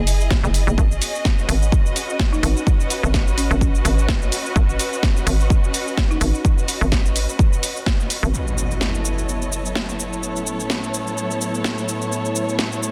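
A dense, heavily limited modern mix in light digital ambience frames this bouncy, swaggering bass house excerpt at 127 BPM in F# dorian, with a 16th-note swing. A hollow, knocking FM bass with tube saturation and sidechain pumping drives the groove alongside an up-front punchy kick and a tape-warm house kit with a cracking snare, hi-hat and shaker, while a distant, lush bowed string section with vibrato pumps underneath and a woody, rustic marimba with delay sits in the background from 2.3 to 6.3 seconds. At 8.3 seconds the harmony shifts from G#m7 to F#m as an electronic impact hits, and a deep, moody ambient pad with chorus and a filter sweep enters at 10.1 seconds.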